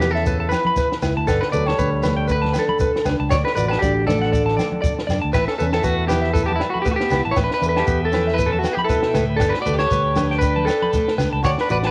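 A twangy, slightly broken-up electric guitar carries the melody up front in this joyful highlife excerpt at 118 BPM in A mixolydian, over a breathy, whispered tenor saxophone second line, a dark thumb-plucked flamenco guitar, bright compressed clean-guitar arpeggios treated with spring reverb and analog delay, a punchy fingered bass, a dry cocktail kit with a high-tuned snare, ringing agogo bells, soft-handed congas and a grainy shekere, with a reedy tonewheel organ on slow rotary speaker adding sustained chords from 5.3 seconds, all captured as a homely cassette recording in a booth.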